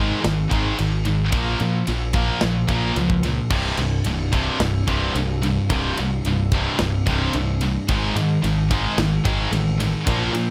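Hard rock with a menacing, aggressive edge, cut from a longer piece, where two distorted, scooped high-gain guitars churn through a riff over Ab5, Bbm and C5 chords (one bright and up front, the other heavy and set back), a punchy, direct picked bass sits forward beneath them, and a tight metal drum kit with a medium-tuned snare, crash and ride enters at 0.2 seconds in a studio room touched by light reverb.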